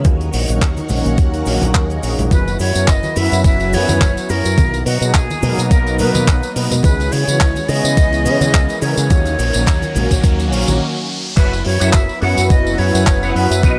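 A groovy, sunny nu-disco cut at 106 BPM in F# mixolydian, this runs on an up-front, thumpy electronic kick, a dry 70s kit with dark cymbals, handclaps and tambourine, ringing cabasa and congas in the background, and a fingered electric bass with an envelope filter. A smooth, detuned analog pad with chorus and tape colour sits beside a lush, phased string machine, both pumping against the kick under chords moving from D#m7 through F#7sus4, Bmaj7 and C#m7. A breathy, bright jazz flute with vibrato, chiff and tape echo carries the melody from 2.3 seconds, and a background riser leads into a stop at 10.8 seconds before the drop at 11.4 seconds brings in a dark, clean, picked guitar riff through an envelope filter and ensemble chorus.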